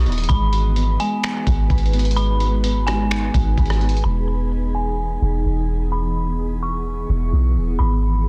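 A half-time groove from a lo-fi sampler-style drum kit sets the pulse, with a thumpy kick, hi-hat, rim clicks and finger snaps that sound muffled and tape-warm, as if re-recorded in a large room, with soft clipping on the snare. This floating, blissful piece of atmospheric cloud-rap is cut from a longer track. A deep, round, sine-like 808-style bass sits up front throughout, while an ethereal, airy pad holds sustained chords through ensemble chorus, phaser, reverb and sidechain pumping. A dark, detuned synth bell carries an eerie, inharmonic melody with chorus and delay, and a thumb-plucked Celtic harp rings with arpeggios in the background until 6.9 seconds. At 4.0 seconds the drums stop, the harmony moves from G#m7 to Emaj7, and a filter sweep carries the rest of the clip in a dense, heavily limited digital ambience.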